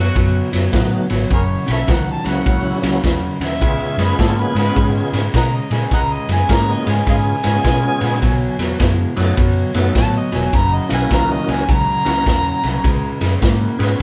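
Electric blues shuffle with a soulful, gritty mood, cut from a longer piece and played live by a band in one room with moderate studio ambience. A jazz-style harmonica takes the solo from the start, its present tone full of vibrato, tongue slaps and scooped notes over changes moving through B7, F#7 and C#7. Beneath it, an electric guitar through a small old amp picks a dark, slightly broken-up riff, while a vintage foam-muted fingered bass gives a round, punchy low end. The raw garage drum kit comes in at 0.2 seconds, up front and saturated, with a boomy kick, medium-tuned snare, shadowy ride cymbal and a pumping small-room sound with a rolled-off top. A tonewheel organ joins at 0.7 seconds as a full, lightly overdriven accompaniment, colored by chorus vibrato and a slow rotary speaker.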